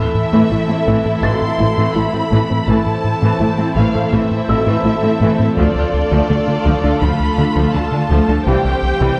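At a steady 83 BPM in a straight 4/4, this cinematic excerpt of hybrid orchestral and electronic film score moves through A minor with a vast, tense mood, shifting from Am to Dm at 5.6 seconds and landing on C near the close. A rubbery, hollow square bass carries a dark riff beneath an airy, breathy pad of sustained chords treated with chorus, while a very quiet glassy wavetable pluck spins crystalline, detuned arpeggios through the middle. Lush bowed strings form the symphonic core: a distant violin section sings the melody over a closer second violin line, violas fill in accompaniment in the background, and a focused, very quiet cello section joins the double basses on the low end, all with rich vibrato. High above, a felt-muted upright piano adds a mellow, boxy texture with audible action noise, very quiet in the mix. A taiko ensemble struck with heavy sticks appears only briefly, from 5.6 to 7.0 seconds, as a close and very quiet punctuation. 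The whole sits in a wet scoring stage reverb that lends the ensemble a sense of large space.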